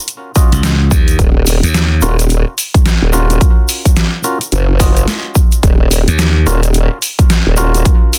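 A dry, dense and heavily limited mix carries this gritty, funky glitch hop excerpt on a swung 16th-note feel, where a punchy, overdriven electronic kick sits up front beside an overdriven dubstep kit of hi-hat, rim click and deep snare, a grainy egg shaker rattles in the background, stringy clav stabs arrive at 0.4 seconds through a combo amp with tape echo and sidechain pumping, a bright, growly glassy slap bass plays from 0.5 to 2.0 seconds and returns briefly at 6.1 seconds, and a chorused formant-sweep wobble bass blending pulse and sine tones enters at 1.2 seconds to hold down the low end.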